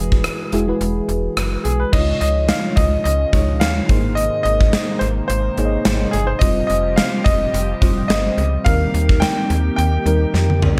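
Bright and polished with a light studio reverb, this glossy, uplifting 1980s-style pop excerpt in Ab major at 107 BPM sets an intimate baby grand piano melody, with its audible action noise, over a soft, warbling FM electric piano with chorus, a snappy slap-like FM bass and an up-front gated drum kit with punchy kick and bright cymbals, while a lush, detuned unison pad with chorus and phaser enters in the background at 1.9 seconds and a drum fill closes the passage at 10.3 seconds.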